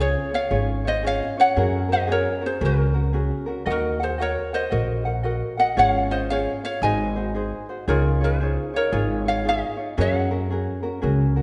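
A lilting swing on the eighth notes at 114 BPM in 4/4 carries this relaxed, languid Hawaiian piece in Db major, cut from a longer performance. Two acoustic ukuleles sit up front: one fingerpicks a warm, light melody from F4 to Ab5, ending at 11.0 seconds, while the other thumb-plucks a bright accompaniment beneath it. An upright bass with gut strings supplies a woody, dark, thumpy pizzicato line down to Ab1. The harmony moves from Db through Gbadd9, Ebm, Db/Ab and Ab7 before settling on Dbadd9 and returning to Gbadd9 at 10.0 seconds. The players sound as if in a church or concert hall, with a wet, lingering reverb, a dulled top end and a faint mains hum beneath the strings.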